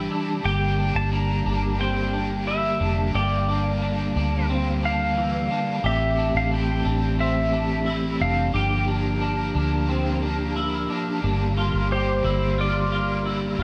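A clean pedal steel guitar carries the melody in this melancholic, haunting dream pop passage, its fingerpicked slide lines compressed, shaped by volume swells and trailed by delay. Beneath it, a mellow tonewheel organ holds soft, flute-like chords with a hint of key click, its chorus vibrato and fast rotary speaker giving the sustained tones a restless shimmer. A clean electric guitar picks arpeggios through ensemble chorus and delay, while a cranked stack guitar adds bright, overdriven accompaniment coloured by harmonic tremolo and analog chorus, sitting lowest in the blend. Up front, a vintage fingered electric bass supplies a dark, round, foam-muted low end. The harmony moves from Gm through Am7 and Gm7 before settling back on Gm at 11.2 seconds, all in a moderate recital hall reverb, in a short cut from a longer piece.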